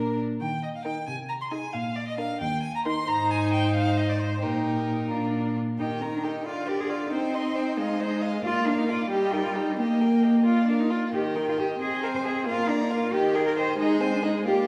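Cheerful and lively, this excerpt from a quick classical-period string quartet movement in E-flat major moves at 90 BPM in a straight 6/8, with a passage repeated from 5.8 s. The first violin carries the melody with vibrato and a slightly distant placement, the second violin adds a close second line with light vibrato, the viola supplies accompaniment, and the up-front cello holds the bass, all four bowed smoothly and evenly with a rich tone. Their harmonies circle E-flat, A-flat and B-flat chords with brief turns to C minor and F minor seventh, and the quartet is heard from further back in a recital hall with a lingering 1.6 s reverb.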